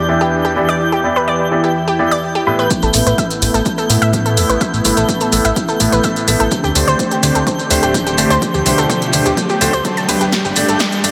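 Brilliant grand piano stabs, carried by tape echo and a filter sweep from 2.7 s, ring out in this bittersweet, driving progressive house excerpt over a mellow, pumping supersaw swell, a sparkling granular shimmer and round, chorused analog pluck arpeggios. A punchy electronic kick, a deep house kit with smooth hats and grainy maracas drop in at 2.7 s, a fat, detuned sidechained bass follows at 2.8 s, a very quiet riser joins at 6.5 s, and a drum fill closes the build at 10.3 s in a lush hall under a dense, heavily limited master.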